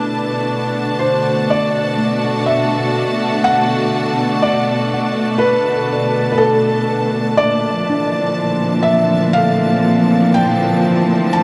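In a slow, straight 4/4, this serene, weightless ambient piece, cut from a longer work, drifts from Bm7 to Bbmaj9#11 at 7.4 s inside a vast, echoing cathedral-like space. A soft, muted upright piano with thin felt and audible action noise carries the melody through a diffuse ambient delay, while a lush, clear symphonic string section holds smooth, vibrato-rich sustained chords up front. Beneath them, a very quiet handpan rings out bright, airy arpeggios of nitrided steel with sharp finger strokes, a tense, string-like sawtooth drone enters at 0.1 s, and a faint twinkling granular texture with octave-up shimmer joins at 0.4 s.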